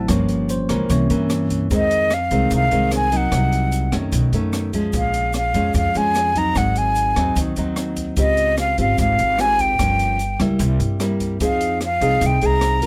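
A bell-like, clean tine electric piano opens this melancholic, wistful bossa nova fragment, taking a brief solo over fingerpicked nylon-string guitar and woody, thumpy pizzicato upright bass. A small-room jazz kit of hi-hat, rim click and a boomy kick, dark and smooth in tone, joins at 0.1 seconds, with a grainy, vintage tube shaker sitting very quietly beneath it. At 1.7 seconds the electric piano drops out and a breathy concert flute takes the melody, its straight tone and soft attack placed close and up front. The classical-sounding guitar stays prominent alongside the flute, while the gut-string bass adds a warm low foundation. The harmony drifts through rich minor-key jazz chords, including a Dbmaj9#11, before returning to Fm7. The close, detailed recording carries little reverb, and the piece is cut from a longer performance.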